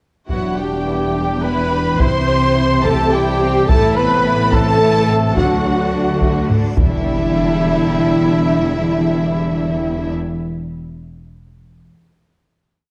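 A full orchestra opens at once in a dark, epic E minor film cue at 106 BPM in 3/4, with lush bowed violins carrying the melody up high over a second violin line's rocking two-note figure, rich violas and a mellow solo trumpet doubling the tune at the octave, and a distant, roomy French horn section doubling it as well, while a very quiet, tight trombone section holds sustained chords. Beneath, a distant cello section and a bowed double bass section share the bass line through Em7, C, Am and D, as a compressed, saturated taiko ensemble strikes single big drum strokes with hard sticks until 7.9 seconds. A huge reverse cymbal swells into a low sub-drop impact at 7.1 seconds for the final hit, all heard through a moderate scoring-stage reverb and a worn, warbling old-cassette texture with wavering pitch drift.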